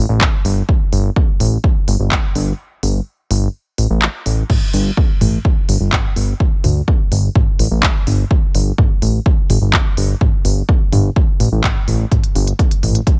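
This melodic techno excerpt, cut from a longer piece, carries a cinematic, melancholic mood over a straight 4/4 pulse. A fat, detuned sawtooth bass opens at 0.0 seconds in a low register, its notes striking with a fast attack and then decaying while sidechain pumping makes it breathe against the beat. An up-front electronic kick arrives almost at once, layered and heavy, carrying the weight of a large room around it. A produced techno kit also sits up front, if a little quieter, filling out the groove with smooth hi-hats, handclaps, toms and crash cymbal. A break opens at 2.6 seconds and runs to 4.5 seconds before the single section carries on, all of it set in a digital ambience that lends the track a polished, spacious sheen.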